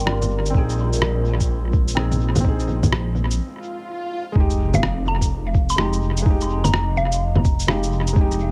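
Swung sixteenths drive this rainy, melancholic future garage excerpt, where a muffled, overdriven kick and tape-warm rim clicks, bongos and shaker sit under a menacing, detuned saw bass with sidechain pumping, a felt-muted upright piano with audible action noise, and a deep, moody ambient pad in the background, while a woody, warbling mallet-like FM pluck carries the melody with dub echo, returning at 4.7 seconds after a break at 3.4 seconds and an electronic swell and sub drop that hits at 4.4 seconds.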